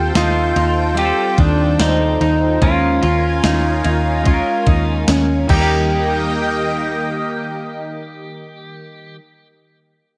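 A bright, twangy pedal steel guitar carries the melody in this dreamy, ethereal dream pop excerpt, set at 73 BPM in Eb lydian, its fingerpicked slide lines trailed by digital delay. Beneath it, a round, foam-muted vintage bass holds Eb2 up front, while a slightly broken-up electric guitar through a small old amp spins arpeggios through lush chorus and delay. A clean, picked electric guitar adds accompaniment with harmonic tremolo, and a thick, detuned sawtooth pad sustains chords with chorus and phaser over the progression from Fadd9/Eb to Db6/Eb, resolving on Eb at 5.5 seconds. A gated 80s drum machine with a thumpy kick and gated reverb snare plays from 0.2 to 5.7 seconds, falling silent just before the second section begins at 5.9 seconds. A metallic, ringing vibraphone with slow motor vibrato sits in the background from 1.4 seconds, all within a dark production with light reverb.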